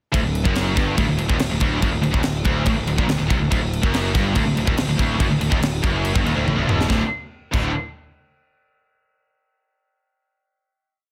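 A short, complete heavy metal piece opens at once on an aggressive, epic riff, with three distorted electric guitars, a fuzz-laden bass and a tight metal drum kit all entering together. The scooped, high-gain guitar leads with a bright single-note riff, while a warm, double-tracked guitar and a tight, picked guitar sit in the background playing the same kind of low single-note line. The growly, punchy picked bass drives eighth notes, doubling the guitar riff. Up front, the acoustic kit keeps a big rock groove with a high-tuned snare, a tight kick, toms and bright crash cymbals, and throws in a fill from 6.5 to 6.9 seconds. At 6.9 seconds the band lands on a final chord that rings until the guitars and bass stop at 7.7 seconds. A light reverb surrounds the parts, and the master is dense and heavily limited in a modern style.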